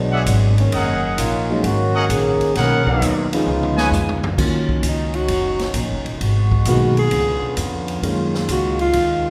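Swinging and dramatic, this big band jazz fragment opens with a mellow, tight trombone section up front playing a second line, backed by a woody, thumpy pizzicato upright bass, warm trumpet section stabs with vibrato, a swinging drum kit with dark cymbals and a punchy kick, and an intimate grand piano whose action noise is audible. A drum fill leads into the second half at 4.4 s, where a trombone section holds sustained chords and a breathy alto saxophone enters at 4.9 s with the melody, close-miked and whispered with subtone and light vibrato. A wet concert-hall reverb gives the whole mix a sense of space.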